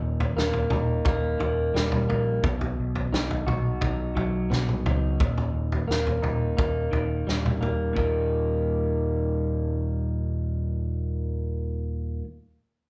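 The recording sounds like a band playing live together in one large studio room, with a moderate reverb giving the parts some air. It is a restless, bittersweet slice of quiet-loud alternative rock in Eb major, moving at 87 BPM in a straight 4/4 and cut from a longer piece. An electric guitar through a small old amp sits up front playing arpeggios, its tone slightly broken-up and compressed. Beneath it, an overdriven picked electric bass adds a bright, growly, amped edge, while a loose indie drum kit with a punchy kick, a medium-tuned snare and toms sounds mid-forward and rolled-off on top. The harmony moves from Eb to B and back to Eb. The drums drop out at 8.1 s as the music shifts into a new section, leaving guitar and bass to carry on until the end of the clip.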